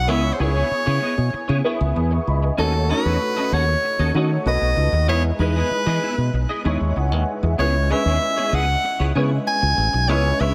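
A bright, close-miked soprano saxophone carries the melody up front, singing in a jazz style with vibrato and scooped notes, its line touched by digital delay. The piece is a bittersweet, nocturnal pop cut at 96 BPM in C# minor, moving through C#m7, D#m7b5, B7 and Emaj7 before returning to C#m7 at 7.6 seconds. Beneath it, a grand piano with ensemble chorus lays down mellow accompaniment, while a punchy, direct fingered electric bass sits prominently in the mix with a modern, bright edge. A clean, picked and compressed electric guitar, also treated with ensemble chorus, enters at 0.1 seconds with a warm-toned riff tucked lower in the blend. Light small-room reverb gives the whole a close, intimate feel in this short excerpt from a longer piece.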